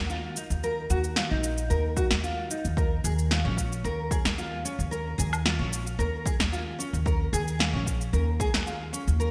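A straight, even pulse in four opens this mystical, meditative stretch of organic downtempo, carried by an up-front layer of electronic shaker, punchy snare and woodblock that sits in gated reverb and was re-recorded in a small room. An electronic kick, layered and punchy, joins at 2.0 s and drops away at 8.5 s. Beneath it, a woody pizzicato upright bass with steel strings holds the low register up front, while a bright, full-bodied nylon-string guitar fingerpicks arpeggios with audible finger squeak, its deep classical tone tinted by subtle chorus and delay. The harmony moves from Ebsus2 to Bbm at 2.8 s, and the whole fragment, cut from a longer piece, rests in a moderate, lush hall reverb with a bright 1980s-style digital sheen.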